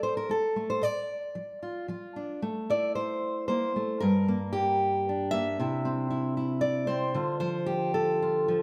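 A steady 3/4 pulse at 114 BPM carries this wistful, intimate folk fragment, cut from a longer piece, where a dark, up-front fingerpicked steel-string acoustic guitar plays alone from 0.0 to 8.6 seconds across a range from G2 to E5, moving through F, Bb, Am, Gm, Cadd9 and Dm7 within a large, wet studio reverb.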